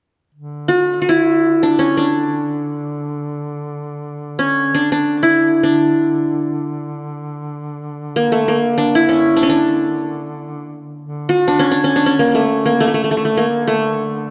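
In free time, this passionate Arabic maqam excerpt in D maqam suznak opens with a low duduk drone on D3 at 0.3 s, sitting quietly beneath the ensemble with a smooth top, folk-style vibrato and scooped notes. From 0.7 s the acoustic qanun carries the melody up front between A3 and F#4-50c, its fingerpicked triple strings bright-edged and trailed by an analog delay. A moderate recital hall reverb surrounds the pair, and the overall production is dark and warm.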